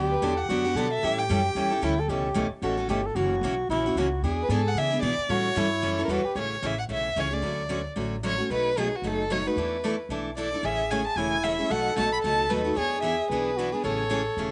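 A bowed violin carries the melody up front, its warm, expressive tone shaped by vibrato, portamento and a soft attack in this lively, charming stretch of acoustic string swing in the jazz manouche style, moving at 225 BPM in 4/4 with a swung eighth-note feel. Beneath it a breathy soprano saxophone adds a whispered, intimate second line in a dark subtone with light vibrato, dropping out at 6.4 seconds and returning at 10.6 seconds. A bright, picked steel-string acoustic guitar supplies the accompaniment with audible finger squeak, while both guitar and saxophone carry a slapback echo. An upright bass played pizzicato on gut strings gives a woody, thumpy foundation. The harmony moves through seventh and extended chords and settles into A major from 6.4 seconds, and the outdoor recording has little reverb and a top end that stops around 10.4 kHz, as though cut from a longer performance.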